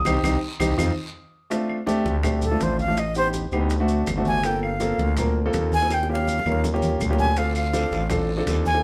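A straight 4/4 groove drives this sunny, sophisticated slice of Afro-Cuban jazz, carried by congas, bongos, claves and maracas, with a raspy, saturated guiro appearing at the start and again from 7.4 seconds. The congas sit in the background with a thin, low-tuned skin, the bongos are round, dry and very quiet, the claves sound woody in a small room, and the maracas are grainy and mellow. Up front, a warm baby grand piano with short sustain takes a brief solo over Cm and F5 chords, joined by a band accent and a drum fill, while a thick, growling FM bass anchors the low end. From 1.5 seconds the harmony moves through F69/A, Am7b5, D7, Gm11, Eb9 and Dm7, and at 2.4 seconds a breathy, reedy concert flute takes the lead with a crisp attack and vibrato. Moderate reverb from the band playing live in one room gives the cut a cohesive sound.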